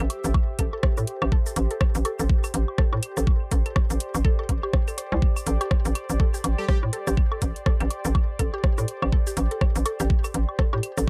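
A dry, close-up mix opens this hypnotic, clinical slice of minimal techno, built on a swung groove held on a single A minor chord. An overdriven, knocking electronic kick sits up front beside a hollow, bouncy FM bass that pumps under the sidechain, while a garage drum kit of metallic hats, rim clicks and shaker adds grit, and tape-toned claves and woodblock trail dub echo. Above them float a woody mallet-like synth pluck riff treated with chorus, phaser and delay, and a warbling, nostalgic pad, while a brief detuned unison lead flickers in the background at 6.6 seconds.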